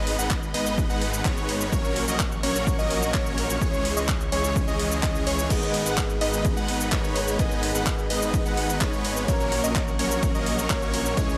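Huge, lush supersaw chords ride up front in this emotional, anthemic stretch of festival progressive house, pumping against a punchy overdriven kick and a tape-warm house kit of handclaps, hi-hat, ride, shaker and crash. A catchy, plucky unison lead spins arpeggios through digital delay, while a thick detuned saw bass with chorus and a smooth-topped string section sit in the background. At 5.5 seconds a boxy, picked old acoustic guitar enters, roughened with vintage 12-bit sampler grit, as the chords return to G#m before moving to F#/A#.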